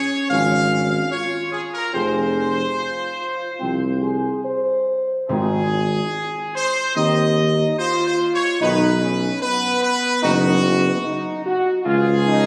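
Captured on a phone in a reverberant scoring stage, with added studio reverb and compression, this majestic, regal classical brass excerpt in Ab major moves at a stately 73 BPM in 4/4 through Db, Fm, Ab, B and back to Db. An up-front, bright trumpet section carries the melody over sustained chords from a dark, distant French horn section with light vibrato and a tight, roomy trombone section in the background, while a solo tuba holds the bass from 0.3 s. Calf-headed timpani played with medium mallets sound close and dry in the background between 5.3 and 6.5 s.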